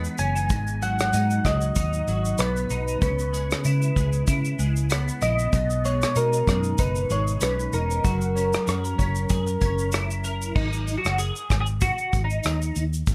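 Soft, round electric-piano-like synth keys carry the melody from 0.2 to 9.9 seconds, colored by tremolo, a subtle chorus and tape echo. Beneath them, a bright, twangy twelve-string electric guitar plays picked, compressed accompaniment with an ensemble chorus and a warbly pitch drift, while an amped, foam-muted vintage fingered electric bass holds the low end. The unplugged acoustic drum kit sits up front with a punchy kick, dark cymbals, hi-hat, rim click and shaker played with bundle sticks, giving a lightly swung feel. The mellow, wistful indie and bedroom pop mood drifts through Emaj7, G#m7, C#m7, B69 and F#7 before a clean electric guitar solo arrives at 10.6 seconds. Light reverb gives the whole passage a gentle studio-room air as it is cut from a longer piece.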